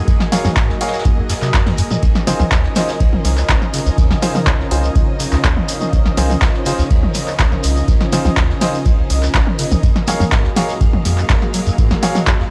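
Playful and trippy, this acid house cut rolls along at 123 BPM in a straight 4/4, centred on Db major as the harmony moves from Gbmaj9 to Dbmaj9 at 2.0 seconds and back to Gbmaj9 at 9.8 seconds. An overdriven acid bass drives the riff with a squelchy, resonant square-wave tone, its tube saturation and lush chorus giving it a dark, gritty bite, while a deep electronic kick sits up front with a large-room character. A punchy analog drum machine adds overdriven handclaps, hi-hat, ride, toms and a dry snare, backed by a very quiet jazz brush kit with dark cymbals and a high-tuned snare, plus a grainy shekere in the background. Lush sawtooth string-machine chords and a cloudy, evolving, bright granular pad with built-in reverb hold the harmony, both pumping with the sidechain alongside the bass. A clear, intimate baby grand piano punctuates the groove with stabs through tape echo, its action noise audible. 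The whole thing has a dry, cassette-tape grit with little reverb, and it is cut from a longer piece.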